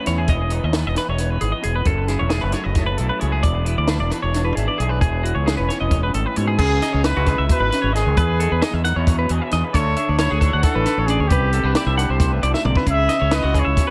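Math rock with a midwest emo lean, this bright, playful clip moves in an odd seven-beat metre, with a slightly broken-up, lo-fi electric guitar carrying chorus and tape echo beneath a twangy, chiming twelve-string electric guitar spinning tape-echoed arpeggios. A growling, overdriven fingered bass and a dry, up-front cocktail drum kit with a high-tuned snare, punchy kick and dark cymbals drive the groove, with a drum fill at 12.5 seconds, all set in an echo-heavy small room. At 6.6 seconds a distant, roomy trumpet enters with the melody, its scooped notes and light vibrato floating over jazzy seventh and ninth chords.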